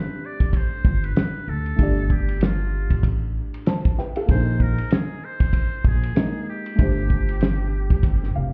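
A swung sixteenth-note groove drives this short jazz-hop excerpt, carried by a cloth-damped drum kit whose fat snare, tight kick, hi-hat and dark ride cymbal sit up front with a thuddy, rolled-off top, entering at 0.4 seconds. An upright bass joins at 0.8 seconds, its pizzicato gut strings giving a woody, thumpy low end that is also placed close in the mix. Underneath, a dark upright piano supplies mellow, worn accompaniment with a boxy, slightly detuned character, audible action noise and short sustain, and it adds a brief fill at 8.0 seconds. Above it all, a trumpet with a metal mute plays the melody in a thin, buzzy, breathy voice with vibrato and a slapback echo, giving it a vintage jazz flavour. The mood is smooth and warm, with suspended chords and the whole mix sounding muffled, as if heard through a wall into a reverberant club.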